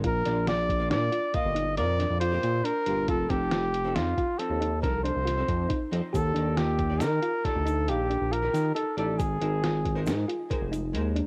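Set in a straight 7/4 at 138 BPM, this intricate, driving slice of progressive instrumental band music rides on a lo-fi sampler-style drum kit whose pitched-down, muffled hi-hat, thumpy kick and fat snare sound compressed and worn by cassette tape. Up front, a smooth synth bass blends sawtooth, square and triangle tones with a touch of ring modulation, giving a mellow, sustained low end under the chords Bb, F7, Ebmaj7 and Abadd9. A dark, clean, hollow-body archtop guitar, picked and double-tracked, sits in the background, while a round, tine-like FM synth pluck with a noise layer spins gentle arpeggios through chorus and tape echo. The trumpet leads from 0.1 seconds with a jazz-style solo line, warm and smooth on top with light vibrato and its own tape echo. At 6.1 seconds, as the second section begins, a grainy, bright egg shaker joins quietly behind the band, and the whole home-recorded cassette sound carries light reverb, tuned to A4 = 439 Hz.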